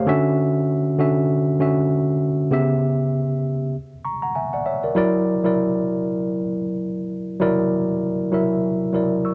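Soul excerpt with a cinematic, bittersweet mood, a lone tine electric piano, worn and slightly out of tune yet mellow and up front, plays gently swung lush chords such as Dmaj9 and F#7b13 across a broad range in a lightly reverberant space, passing through a brief chordless moment near 3.7 seconds before moving into a new section at 5.0 seconds.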